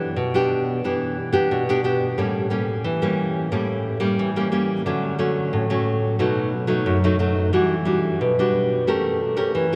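Samba for solo nylon-string guitar, a playful, sunny excerpt cut from a longer piece, moving at 90 BPM in a straight 4/4. The fingerpicked guitar carries a classical character and a dark acoustic tone, sitting up front and spanning F#2 to Bb4 across its 9.8 seconds. Its harmony is rich with jazz colour, opening on Em7 and passing through A7b9, Dmaj7 and B7 before settling on Em9 and returning to A7b9 at 8.9 seconds. A lush cathedral reverb with a long 6.1-second tail surrounds the instrument, giving the sound of a church or concert hall. The result pairs bright dance-like energy with a spacious, echoing atmosphere.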